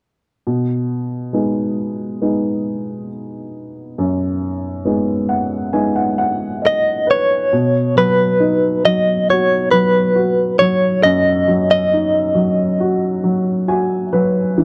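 A clean, compressed electric guitar, picked and recorded direct with tremolo, carries the melody from 6.7 seconds, sitting up front in this hopeful, tender folk excerpt in B major. Beneath it, a woody upright piano plays the accompaniment from 0.5 seconds, opening on a B6 chord and moving at an unhurried 68 BPM in a straight 4/4 feel. The sound is dry and close, with light reverb, like a 1970s studio recording.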